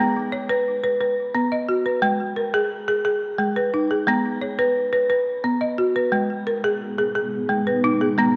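A folk marimba struck with hard mallets spins gentle, hypnotic arpeggios in a steady three-beat metre, its woody, bright and percussive bars sitting up front, trailed by delay and a shimmer reverb. At 6.8 s a dark, cloudy granular pad drifts in under it with slow-blooming sustained chords, blurred and detuned, as the harmony rocks between B over G# and G# minor. This meditative world excerpt sits in a spacious concert-hall reverb with a small-room ambience, coloured by worn cassette tape whose warbly pitch drift gives it an aged, dreamlike haze.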